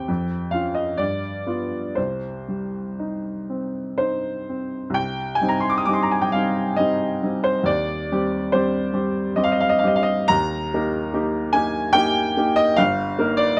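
A clear upright piano opens this short cut from a romantic classical nocturne, its woody, open tone sitting up front under close, detailed microphones and light reverb. In C minor and 3/4 with a rubato feel drifting between 58 and 75 BPM, the melancholic, mournful solo ranges from a deep G1 up to Eb6, moving through Db/F, G7 and Cm early on. A restatement of the opening material begins at 5.0 seconds and turns toward Eb harmony before the cut ends at 13.6 seconds.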